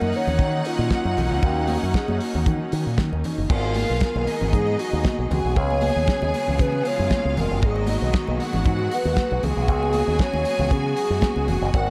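Disco at 116 BPM in G# dorian, driving and glamorous, with a breathy, hollow alto flute carrying the melody over a rich, lush violin section playing a second line and a clear string section holding sustained chords through D#m7, then G#m7 and C#7sus4 from 3.5 seconds. Up front, a punchy fingered electric bass with an envelope filter sits alongside a damped 70s drum kit, tight kick and medium-tuned snare, entering at 0.1 seconds, while high-tuned, ringing congas sit in the background. The production is dark and warm, set in a small room, in a section cut from a longer piece.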